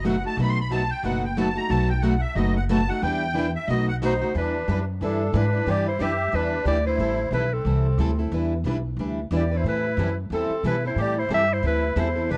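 A swinging 4/4 pulse drives this bittersweet snippet of acoustic string swing, where a woody, thumpy pizzicato upright bass and two picked parlour guitars, one boxy and one set in the background, back a shimmering, reedy musette accordion that takes a solo until a breathy, vibrato-laced clarinet with scooped notes takes the melody at 4.1 seconds, all in a dry, close small-room sound with a 1970s studio character.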